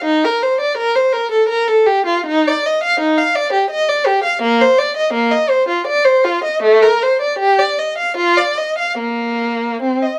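Dark, lightly reverberant production frames this introspective, solemn fragment of a baroque-style classical suite movement for a single unaccompanied violin, which plays up front for the full 10.2 seconds in a rubato 3/4 at roughly 71-86 BPM, its expressive bowed line ranging from A3 to F5 with vibrato and gliding portamento.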